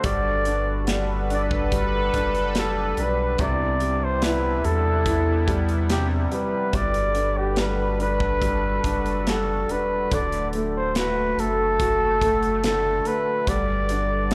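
A flugelhorn with a warm, jazz-inflected tone carries the melody up front as the solo voice, shaping its line between G4 and D5 with light vibrato and scooped notes, a slapback echo trailing each phrase. This tender, heartfelt pop ballad sits at 72 BPM in a straight 4/4 in G major, and the fragment is cut from a longer piece, lasting about 14.3 seconds. A clear, polished baby grand piano supplies the accompaniment beneath it, also touched by slapback echo, while a resonant, evolving synth pad built from detuned sawtooth and triangle tones with a sub octave holds sustained chords, its slow attack, filter swell and chorus giving it a bright shimmer. A deep, round sine sub bass sits up front and mellow, and an airy acoustic studio drum kit keeps time on hi-hat, a punchy kick and a medium-tuned snare. The harmony moves gently from Gmaj7 to Cmaj7, back to Gmaj7, then to D before settling on Gmaj7 again at 13.5 seconds, all heard as a live club performance through the venue's sound system with a small-room ambience.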